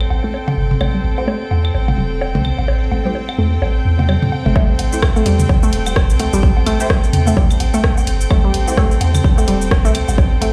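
Heard through light stone-room reverb, as if played on a big sound system in a bare room, this cool, quirky minimal techno excerpt swings its sixteenths over a deep, sine-based sub bass with a pitch-drop attack that pumps against the beat, dry analog-style claves, woodblock, bongos and toms with delay, and a floating bowed chamber string section held close and soft-attacked. A hollow, bouncy square-wave pluck riff with chorus, phaser, tape grit and digital delay bounces on top, while muted, detuned dub chord stabs sit in the background from 1.2 to 8.7 seconds. At the drop at 4.6 seconds, an up-front layered kick arrives, and a moment later a house kit of bright hats, rim clicks and shaker joins under low-pass filtering.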